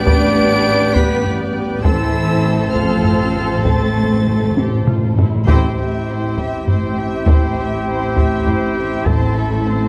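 Set in a moderate concert hall reverb, this heroic, relentless passage of epic orchestral film score is cut from a longer piece and moves at 67 BPM in 6/8, tuned to A4 = 436 Hz. Close, dry taiko drums struck with hard sticks drive it from 0.1 seconds, while a very quiet timpani with hard mallets adds an articulate fill from 1.8 seconds and returns at 9.1 seconds. A lush violin section carries the expressive, vibrato-rich melody high above a distant second violin line, with violas, cellos and woody double basses filling out the bowed strings beneath. Dark, roomy French horns and a warm woodwind section hold sustained chords, and a dark solo trumpet with light vibrato punctuates the texture with stabs. The harmony shifts over a steady A in the bass, from G/A through F/A and C/A before settling on A minor. At 5.5 seconds a band accent launches a build-up that pushes toward the end of the passage.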